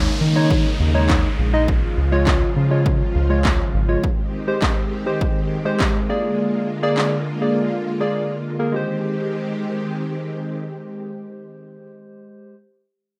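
Dance-pop at 102 BPM in Ab major, summery and upbeat, this short excerpt pairs round, detuned square-and-sawtooth analog keys with chorus and plate reverb, vintage slow-attack string-machine violas holding sustained chords, a deep, dark bass pumping under sidechain until 4.0 s alongside an electronic downlifter, and a punchy analog drum machine of kick, snare and handclaps re-recorded in a large room that plays from 0.5 to 7.1 s before a break at 7.6 s, all in a rough home-demo mix with moderate room reverb.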